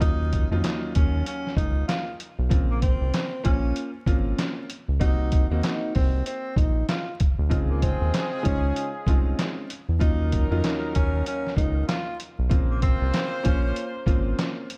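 A moody, gritty boom-bap hip-hop groove opens at once, its trip hop sampler-style drum kit sitting up front with a thumpy kick, medium-tuned snare, hi-hat and handclaps, all compressed, pitched down and muffled, swinging at 96 BPM in 4/4. Beneath it a round analog bass blends sawtooth and sine tones with ring modulation, deep and evolving, with a fast attack and sustained notes. A grand piano supplies intimate, vintage-sounding accompaniment with short sustain and audible action noise. Over the top, a breathy tenor saxophone carries the jazz-style melody in a soft subtone, with vibrato and scooped notes, sounding distant and whispered over a progression of Ebm7, Bbmadd9, Ebm6 and Dbmaj7. At 7.5 seconds a dark trumpet section joins with tight, classical-style stabs carrying light vibrato and tape echo. The dry, dark production is coated in vinyl crackle, and this brief cut from a longer piece runs 14.8 seconds.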